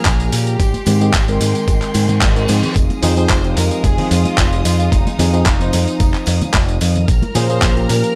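This short excerpt has a dry, gritty hardware sound with little reverb overall, cut from a longer nu-disco piece in F minor at 111 BPM with a lightly swung 16th feel and a groovy, sleek mood. Up front, a bright fingered electric bass with an envelope filter and transformer saturation anchors the low end, joined by a thumpy, overdriven electronic kick and a dusty, sampler-style soul kit of handclaps, hi-hat and tambourine, with studio reverb on the kick and kit. Tambourine and congas, played with soft hands in a small room, sit in the background. A mellow, worn tine electric piano, slightly out of tune and pushed through a combo amp with subtle chorus, carries the accompaniment, while a lush, rich violin section holds sustained chords and a close, biting violin section with light vibrato plays the melody through an analog delay. The piano, bass and sustained violins pump against the kick as the harmony moves from Bbm7 through Abmaj7 to a long Fm7, and an electronic reverse cymbal sweeps in from 1.9 to 2.8 seconds.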